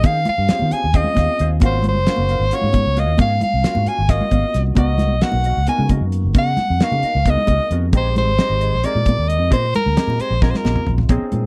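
Moving in 7/8 at 266 BPM, this funky, nocturnal slice of electric jazz fusion puts a bright soprano saxophone up front, its vibrato-laden melody carrying a slapback echo, over a round, dark fingered bass and a damped 70s drum kit with a fat snare and tight kick, while high-tuned congas ring softly in the background alongside barky tine electric piano drenched in lush chorus and mellow, compressed guitar stabs with analog chorus, the close 1970s-style studio recording staying dry as a drum fill arrives at 10.4 seconds before the cut.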